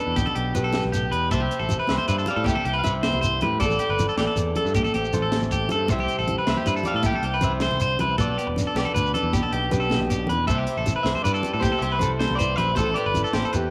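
Highlife guitar band excerpt in C major at 105 BPM in a straight 12/8, sunny and danceable, with a twangy, slightly broken-up electric guitar melody touched by tape echo, a brighter up-front electric guitar picking arpeggios, a dark fingerpicked nylon-string guitar in the background, punchy picked electric bass, a tight funk kit with high-tuned snare, thin-skinned congas and a grainy shekere, all heard through moderate spring reverb and the small-room feel of a home cassette recording.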